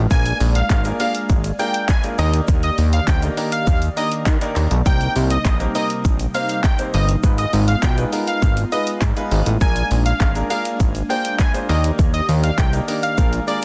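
A dense, heavily limited modern master with little reverb carries this upbeat, summery dance-pop excerpt, where a punchy, up-front electronic drum kit of kick, hi-hat and handclaps with shaker drives a fat, detuned sawtooth analog bass, a clear, intimate grand piano with audible action noise, a soft, breathy pad in the background and a bold, retro, warbling octave-doubled lead with vibrato and dub echo, while a grainy, very quiet egg shaker sits beneath and the pad, bass, lead and piano pump against the sidechain through a chord cycle that moves from Bb7 to Ebmaj7, Cm7 and Abm6 before returning.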